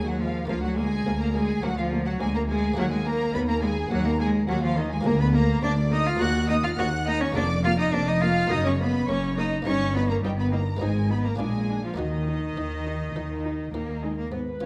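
A dramatic, stormy baroque-style classical concerto movement in Eb minor at 104 BPM, cut from a longer piece, led by a rich, focused solo cello carrying the melody up front while a studio violin section with a smooth top and vibrato also carries the melody high above. An intimate sul tasto chamber violin section plays a second line, a distant viola section adds accompaniment from 0.2 s, and a woody cello section and a portamento-tinged double bass section lay down a dark bass, with a muted, lute-like buff-stop harpsichord plucking very quietly underneath. A 1.8 s scoring stage reverb lends a moody glow, as the harmony moves from Bb/D to Ebm, touches Bmaj9/F#, and closes on Bb7 to Ebm at 12.0 s.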